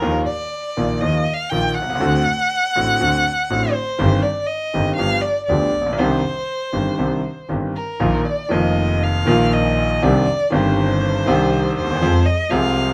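Tango with a sultry, melancholic rubato feel: a rich, focused bowed violin sings solo lines with vibrato up front over a bright, worn grand piano accompaniment and a clear, intense bowed double bass with light vibrato, all set in a moderate club reverb, as the harmony moves from Ebsus2 through Cmadd9 to close on Fm.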